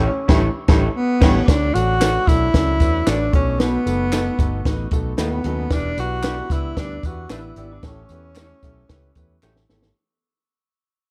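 A dark, warm production set in small room ambience frames this short cut from an uptempo 1960s-style soul tune at 113 BPM in D major, uplifting in mood. It opens on a band accent over an A7 chord, with a distant, very quiet horn section adding an octave-doubled second line that drops out at 1.4 seconds. The breathy tenor saxophone sits up front with the melody, its smooth top, light vibrato and scooped notes giving a jazz-style lilt, while a subtoned baritone saxophone plays a soft-attack riff low in the background. A punchy, foam-muted electric bass and a dry compact cocktail kit with a high-tuned snare and dark cymbals drive the groove, joined at 1.5 seconds by tambourine, tube shaker and group handclaps as the piece moves through Dmaj7, B7, Em7 and back to A7. Behind them, a boxy grand piano with audible action noise, slightly broken-up lo-fi guitar stabs and a bell-like glockenspiel struck with soft plastic mallets fill out the texture. 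The music fades out from 1.5 seconds, and a drum fill starting at 9.4 seconds closes the cut.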